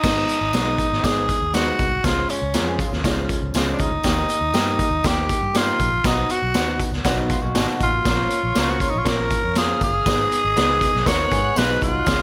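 A warm, danceable slice of uptempo 1960s-style soul at 120 BPM in a straight 4/4, this excerpt rides a chord cycle of Abm, Db, Eb, Cb and Bbm, tuned slightly low at A4 = 439 Hz. Up front, a raspy, growling tenor saxophone carries the melody with a light vibrato and a bright, pop-style edge, backed by a raw garage drum kit whose punchy kick, medium-tuned snare, hi-hat and crash sound saturated and gritty with a rolled-off top. Beneath them, a vintage muted fingered electric bass gives a dark, round, foam-muted low end, while a natural-sounding baby grand piano and a jingly tambourine sit in the background. From 2.5 s, a picked electric guitar through a small old amp drops in short, slightly broken-up, lo-fi riffs coloured by spring reverb. At 8.1 s, a bowed studio string section adds a reedy, gut-string second line with a smooth top, all within light reverb and studio ambience.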